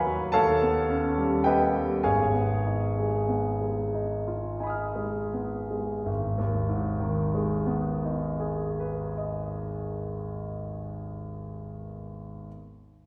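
A clear concert grand piano opens this brief excerpt from a longer impressionist classical piece, playing alone in a hazy, mysterious mood. The solo part moves with a free, rubato feel in 6/8, and the pace gradually slows over the first 6.1 seconds. Harmonies drift from a D#aug7 into a G#m6 before settling on G#m at 6.1 seconds, where a second section begins. The piano sounds open and up front, reaching from a deep bass register up into its high treble. A wet recital hall reverb surrounds the instrument, giving it the resonance of a church or concert hall.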